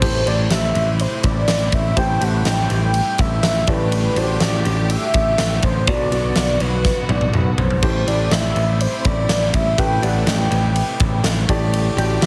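A velvety, chorus-touched synth lead carries the melody over intimate concert grand piano, lush bowed strings in the background, a growly picked electric bass and a huge arena drum kit with a fat snare and punchy kick, in an uplifting, anthemic piano-driven pop excerpt at 123 BPM that moves through Am7, Dsus4/A and Bm, with a drum fill at 6.9 seconds, recital hall reverb and a heavily compressed radio sound.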